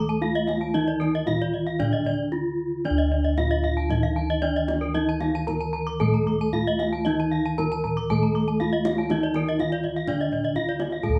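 This brilliant, shimmering Balinese gamelan passage, cut from a longer piece, opens at once with bronze metallophones and bossed gongs sounding together in a straight four-beat pulse. A ringing, wooden-mallet metallophone carries the melody in the middle register, while a lower metallophone of the same kind plays the accompaniment beneath it. The paired tuning of these bronze keys produces shimmering beats. Two higher metallophones, struck with horn mallets, spin arpeggios above: the topmost sounds bright and airy, and the other comes across close and full. The gongs hold the bass with a round, mellow, beating tone from padded beaters, heard close and dry. A kendang enters at 0.1 seconds with soft hands, its tight, distant sound set in a large room, and the ensemble pauses briefly for a break between 2.1 and 2.9 seconds in what otherwise plays as one continuous live performance in a small, moderately reverberant room.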